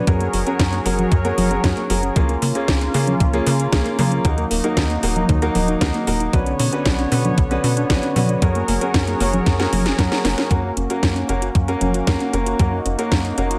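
Lightly reverberant and sunny, this playful italo disco clip at 115 BPM in F# major sets a tight, punchy sequencer bass with tube saturation and a thumpy sampler-style kick under an overdriven house kit of cracking snare, metallic hats and congas, while a smooth, nasal analog pad holds sustained chords with chorus, a soft, round pluck ripples arpeggios through chorus and tape echo in the background, and a clear, boxy baby grand piano adds echoing stabs, with a drum fill at 9.5 seconds leading into a settled F# chord at 10.5 seconds.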